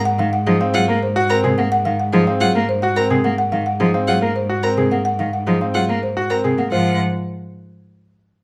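Hypnotic and bright, this minimalist classical pattern music, cut from a longer piece, moves at 108 BPM in 3/4 in Ab mixolydian, resting on an Ab9 chord before shifting at 6.7 s to an Ab7 chord with its third omitted. A buzzing, woody marimba with medium mallets carries the melody, close-miked and full, over an expressive bowed cello holding a low Ab bass and a second, focused cello with a smooth top playing the accompaniment. A brilliant concert grand piano with audible action noise enters with arpeggios at 0.5 s, and a rich violin adds higher arpeggios from 0.7 s, within a large studio reverb.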